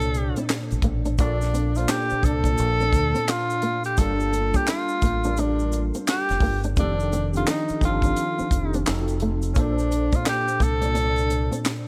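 Introspective and soulful, this short neo-soul and R&B excerpt sets an up-front, breathy tenor saxophone soloing in a mellow jazz style, with vibrato and scooped notes, over a swung 4/4 groove from a tight, dry funk kit with a high-tuned snare, handclaps and hi-hat. A clean tine electric piano with ensemble chorus, played through a combo amp, carries chords that begin on Bbmaj9 and pass through Gm9 and F13, while a dark, round dub bass played with the fingers sits deep underneath. In the background, a boxy, thumb-plucked flamenco guitar with audible finger squeak adds a second line from 0.2 s, alongside a quiet tube shaker and finger snaps in a small room.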